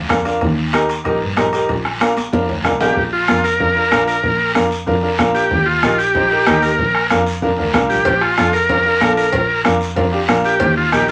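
A rich, bowed double bass opens this sunny, festive cumbia fragment. It is joined at once by a bright, woody upright piano, a soft-beater bombo, damped high-tuned congas, a raspy guiro, and ringing timbales and cowbell in the background. After a drum fill from 2.2 seconds, a buzzy vintage combo organ with heavy vibrato takes the melody at 2.8 seconds, sitting up front beside the piano, while the timbales and cowbell drop out and return at 8.1 seconds, all in a wet studio reverb.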